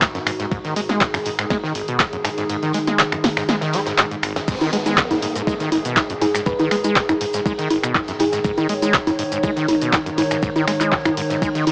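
Up front, a squelchy, resonant sawtooth acid bass drives a riff through overdrive, analog chorus and analog delay, giving this trippy, gritty acid house cut from a longer piece its bite at 121 BPM in a straight 4/4. Beneath it, a warbling, nostalgic pad holds sustained chords, its detuned, wave-folded tones softened by chorus, built-in reverb and sidechain pumping. A punchy, dry analog drum machine sits forward with overdriven congas, handclaps, finger snaps, hi-hat, crash and snare. It runs alongside a thumpy, overdriven sampler-style kick re-recorded in a large room and a very quiet, saturated low-tuned acoustic kit with a fat snare in a bright stone room. The kick drops out from 2.5 to 4.5 seconds, and at 4.5 seconds the drop arrives with a background downlifter and faint, grainy maracas. A round, tine-like FM pluck with a dark, gentle character adds a brief melody from 6.2 to 8.6 seconds, all heard through a lo-fi home cassette recording with small-speaker sound and moderate booth ambience.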